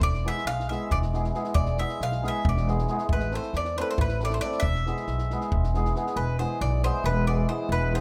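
Set in a straight 7/8, this short cut from a longer Balkan wedding-band piece feels virtuosic and bittersweet. A bright bowl-back mandolin carries the melody with a picked, double-string sound, sitting up front in a close, detailed mix with little reverb. A hammered dulcimer joins at 0.2 seconds as accompaniment, its shimmering, ringing tone filling the middle register. Underneath, a pizzicato upright bass on gut strings gives a dark, woody, thumpy foundation. A compact cocktail drum kit adds a dry, punchy kick and a high-tuned snare until it drops out at 6.1 seconds. The harmony moves from E to A minor and back to E, and the remaining instruments carry the phrase to its close at 8.0 seconds.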